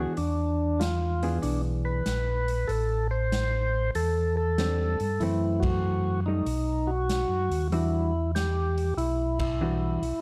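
A percussive tonewheel organ carries the melody from the opening moment, its key click and second-harmonic percussion ringing through a slow rotary speaker, while a second, mellow tonewheel organ holds down the bass line with a round, dark tone coloured by chorus vibrato and its own slow rotary. A clean hollow-body electric guitar fills in the accompaniment with a fingered, compressed sound, and a swinging big-band drum kit joins at 0.2 seconds with hi-hat, ride, a medium-tuned snare and a punchy kick under airy, dark cymbals. This greasy soul jazz organ trio swings at 95 BPM in 4/4, moving through E7, Am7, F#m7b5, B and Em9. The band hits accents together at 5.5 and 9.3 seconds, and both organs sit up front in a warm, lightly reverberant mix. The piece is cut from a longer performance.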